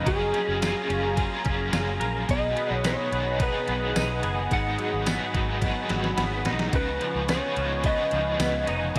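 A slide guitar melody opens this melancholic, hazy dream pop excerpt at 108 BPM, its slightly broken-up, compressed tone carried on delay and riding over a bed of parts that nearly all sound together from the start. Beneath it, a bright, overdriven stack guitar adds accompaniment colored by tremolo and analog chorus, while a clean, twangy electric guitar picks arpeggios through ensemble chorus and delay. A swirling, detuned sawtooth pad holds sustained chords high above, slow to bloom and shimmering with phaser and chorus, and a dark, foam-muted fingered bass gives round, punchy low support. An overdriven 8-bit drum machine sits up front from 0.1 seconds with a thumpy kick, medium-tuned snare, ride cymbal and tambourine, breaking into a fill between 5.6 and 6.7 seconds. The harmony moves through F#maj9, B6, G#m7 and C#9, all bathed in a huge ambient reverb that gives the piece its drifting haze.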